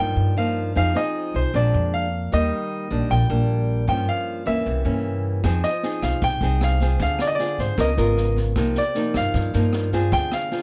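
A straight 4/4 bossa nova pulse at 154 BPM carries this intimate, melancholic excerpt in C minor, with a fingerpicked nylon-string guitar and a woody, pizzicato upright bass sitting up front beneath a clear, polished baby grand piano that sings the melody between C5 and G5. At 5.4 seconds an open jazz kit joins from a small room, its boomy kick, rim clicks and high-tuned snare set back behind the other parts. Light reverb surrounds the group as the harmony moves through rich minor-key jazz chords, from Cm11 through Db13 and back to Cm11.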